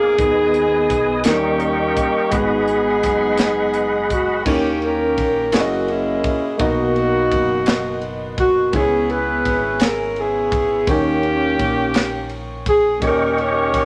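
A mellow saxophone section carries the melody up front, its soft attack and light vibrato giving this slow gospel excerpt a solemn, fervent glow at 56 BPM in a straight 6/8. A clear, woody upright piano with long sustain accompanies throughout, while a fingered electric bass sits low and round beneath it. A tonewheel organ adds sustained chords with key click, a slow rotary speaker, light overdrive and chorus vibrato, sounding at the start until 4.4 seconds and returning at 13.0 seconds. The crisp fusion drum kit enters at 0.2 seconds with dark cymbals, a high-tuned snare and punchy kick, joined by very quiet, compressed group handclaps. The harmony moves from G#m/D# through D#7, G#m7, F#13, Bmaj7 and C#m7 back to D#7, all set in a moderate small room.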